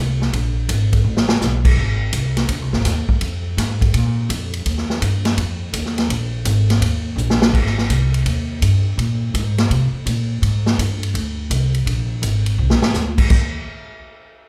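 A swung 4/4 pulse at 167 BPM drives this joyful, brassy big band swing excerpt, where a woody, plucked upright bass spans Ab1 to C3 beside a roomy drum kit of ride, hi-hat, crash and splash cymbals, a medium-tuned snare and a boomy kick, with short drum fills at 1.1, 7.2 and 12.6 seconds, all set in a moderate recital-hall reverb.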